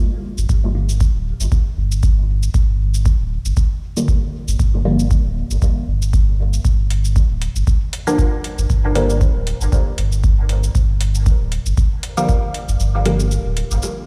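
Dub techno with a nocturnal, deep mood, built on a filtered dub chord stab whose muted, detuned sawtooth tone is shaped by a moving notch, phaser, sidechain pumping and dub echo, over a round sine sub bass that also pumps and sits up front. An analog, tape-warm electronic kick drives the groove with swung electronic shaker and metallic hi-hats, and the kick drops out at 12.8 seconds. Light digital ambience and a large studio reverb give the whole short section the feel of a big sound system in a bare room.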